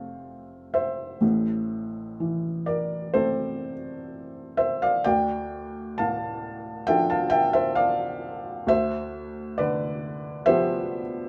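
Rubato in a slow 4/4 at 60-69 BPM, this serene, nostalgic classical nocturne in the romantic style, cut from a longer piece, features a solo felt-muted upright piano, soft, mellow and intimate, sitting up front and spanning F1 to A5, tuned to A4 = 445 Hz and moving from F through Am and Dm to G7/D within a moderate large-studio reverb over its 11.3 seconds.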